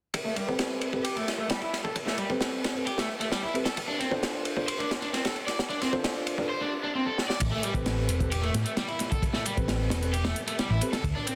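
Gritty and swaggering, this breakbeat excerpt in A minor at 132 BPM opens with a crunchy, punchy drum kit with dark cymbals and a high-tuned snare, a bright overdriven electric guitar riff and mellow, vintage grand piano stabs, both run through tape echo and a filter sweep over Am9 and Dm7, before a round, hollow-body fingered bass and a tape-warm electronic hi-hat join at 7.4 seconds after a drum fill, all set in a lush hall reverb under a dense, heavily limited master.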